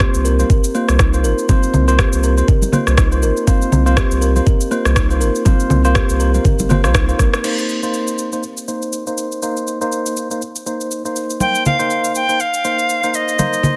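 Earthy and hypnotic, this afro house cut moves at 121 BPM in 4/4 with a swung sixteenth feel in C minor, taken from a longer piece. It opens on an Fsus4 chord, with a woody, hollow kalimba playing arpeggios and a clean tine electric piano playing filtered stabs, both pumping against the kick and trailed by digital delay. Underneath, a round sine sub bass sits up front alongside a knocking electronic kick, while an afro-pop kit adds crash cymbal, rim click and shaker, and damped, high-tuned congas played with soft hands enter at 0.4 seconds. A drum fill at 7.2 seconds leads into a Cm7 passage where the kalimba, sub bass, kick and congas drop away, leaving the electric piano and kit. At 11.4 seconds the congas return, and a bright, reedy concert flute with vibrato and a soft attack takes the melody up front, its notes echoed by digital delay. Light reverb and digital ambience give the mix a roomy air.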